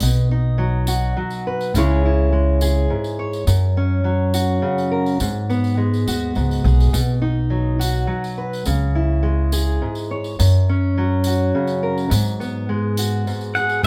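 Nostalgic and peaceful, this short cut from a longer acoustic folk piece sways in 3/4 at 104 BPM, with a dark, full-bodied fingerpicked steel-string acoustic guitar up front over a woody, growly pizzicato upright bass and a jingly tambourine, moving through B, C#m and F# chords in a live stone-room sound until a bright, twangy pedal steel guitar slides in on a single high note at 13.6 seconds.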